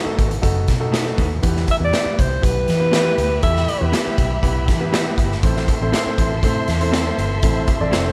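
A straight 4/4 groove at 120 BPM drives this joyful, uptempo 1960s-style soul snippet, where a gritty, punchy garage drum kit sits up front in a bright stone room, a round, foam-muted fingered bass and an intimate grand piano with audible action noise move through B7, Em and Am, slightly broken-up electric guitar stabs hover in the background, a clear, jazz-style alto saxophone with vibrato takes a short solo melody from 1.7 to 3.9 seconds, and a veiled, distant con sordino string section adds a lush second line from 2.4 seconds, all under light reverb.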